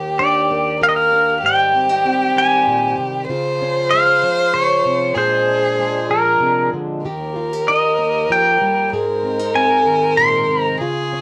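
This acoustic folk-pop ballad is a heartfelt, nostalgic excerpt in 3/4 at 96 BPM, carried by an up-front electric pedal steel guitar that sings the melody with fingerpicks, slide and volume swells, entering at 0.2 s and playing until 10.8 s. A rich, intimate violin plays a second line with light vibrato and an airy, soft-attacked bow. Beneath them, a full-bodied, fingerpicked nylon-string guitar with audible finger squeak and a reedy, breathing harmonium in the background move through chords from Ebmaj7 to Ab, all with the homespun grain of a cassette recording in light reverb.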